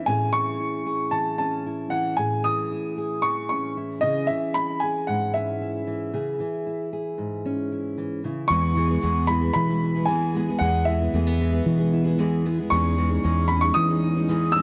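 An upright piano carries the melody up front in this nostalgic, anthemic folk passage, its woody tone and long sustain ringing out high in its register. Beneath it, a fingerpicked steel-string acoustic guitar plays a dark, concert-toned accompaniment from the start in a straight 4/4 feel. At 8.5 seconds the music moves into a new section, where a second steel-string guitar joins with a warm, picked part that has an auditorium character, and a fingered electric bass arrives up front with a round, amped tone. The harmony moves from Amaj7 to C#m in the opening section, then settles on E before closing on C#madd9/E. Light reverb and a small-room ambience surround the performance, which is cut from a longer piece and ends at 14.6 seconds.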